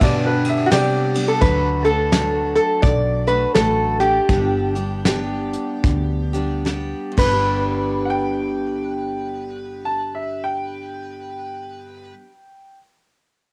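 Easygoing and sunny, this honky-tonk and classic country excerpt swings gently in 4/4, led by a nasal, metallic lap resonator guitar played with slide and fingerpicks over a full-bodied picked steel-string acoustic guitar and a growly, round fretless electric bass. A brilliant upright piano with long sustain adds a second line at the opening and returns at 8.1 seconds, while a soft brush drum kit with a fat snare and punchy kick plays until about 7.3 seconds, closing with a fill that begins around 6.7 seconds. The music slows through its middle stretch, and the guitars, piano and drums carry a cassette-tape home-recording character with light reverb.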